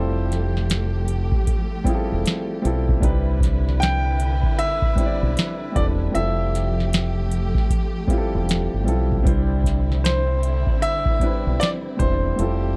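A dark, close-sounding neo-soul R&B fragment with a faint mains hum, where a clear baby grand piano carries an intimate melody over a woody upright piano, distant lush strings with vibrato and portamento, a round, up-front dub bass and a booming analog drum machine with a deep kick, tonal snare and metallic hats, all moving smoothly and soulfully between Fmaj9 and Cmaj9 with a swung sixteenth-note feel.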